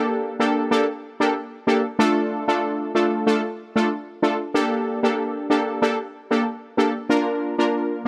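Dancehall in a tough, bouncy mood, this short excerpt cut from a longer piece runs at 94 BPM in a straight 4/4. A single synth brass stab carries everything alone from 0.0 to 8.1 seconds, sitting between A3 and Bb4. Its tone is brassy and punchy, built on a detuned sawtooth with a filter pluck, a fast attack and a decaying tail, treated with chorus and placed bright and up front. The harmony moves from Gmadd9 to Dm, back to Gmadd9, and lands on Bb near the close. Light reverb and a digital ambience frame the sound.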